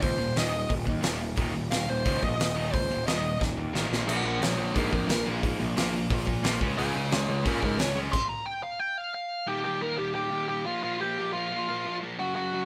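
A dark, bluesy overdriven lead guitar sits up front, soloing from the start over a rowdy, energetic punk rock excerpt at 178 BPM, backed by a crunchy rhythm guitar, a bright, tight distorted guitar, a growly fuzz bass and a loose acoustic drum kit with dark cymbals, a fat snare and a pumping room sound. A faint, double-tracked fuzz guitar joins at 4.1 s, a drum fill comes just before it, and at 8.1 s the band stops, leaving the lead and crunchy guitars to carry into an Eb major passage at 9.5 s. The whole band plays live in a stone room with moderate reverb.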